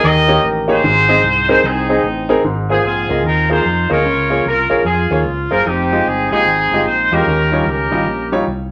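Uptempo gospel in Ab major at 149 BPM with a swung 4/4 feel, this hopeful, jubilant fragment from a longer piece sets a tight, up-front, jazz-style horn section with light vibrato carrying the melody over woody, short-sustain upright piano accompaniment and a round, punchy fingered electric bass that lingers alone until 8.7 s, all bathed in a wet studio reverb with a vintage glow.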